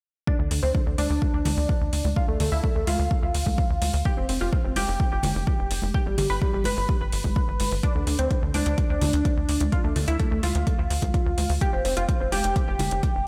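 A detuned, wave-folded sequenced synth plays tight, driving arpeggios with chorus, phaser, tape echo and sidechain pumping at the front of this expansive 127 BPM progressive house excerpt in D dorian, over a punchy, overdriven kick, a metallic hi-hat, a plucky sawtooth-and-square sequencer bass with a moving notch, and congas set back in a small room, as the chords cycle through Dm, Fsus2 and G.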